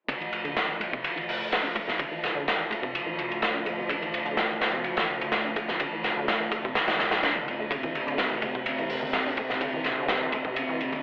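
Swaggering and gritty, this short breakbeat excerpt at 126 BPM in D minor rides on a crunchy, saturated drum kit that sits up front with a tight kick, medium-tuned snare, dark cymbals and a rolled-off top. Behind it, an earthy chamber string section holds sustained Dm chords with light vibrato, pumping from sidechain and low-pass filtered with a filter sweep, while a rubbery, resonant sawtooth acid bass riff with analog delay and its own filter sweep stays in the background. Soft-handed congas join at 7.8 seconds, and the whole mix has a dry, gritty, telephone-like character with transformer saturation in a moderate studio ambience.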